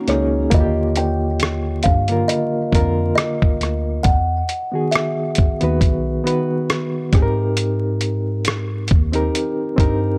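A swung 68 BPM groove in 4/4 comes from a dusty, compressed soul sampler-style kit sitting up front, with a thumpy kick, hi-hat and rim click, under a mellow, cosy lo-fi hip hop piece in Eb major, cut from a longer track. A worn, slightly out-of-tune tine electric piano carries the bass, while a reedy, bright electric piano with fast tremolo and a cassette-tape tint plays up-front chords moving through Bmaj9, Ebmaj9, Emaj9 and Abmaj9. A woody, hollow kalimba sings a soft, ringing fingertip-plucked melody from 0.1 until 7.1 seconds, all captured in a dry, gritty hardware sound laced with vinyl crackle.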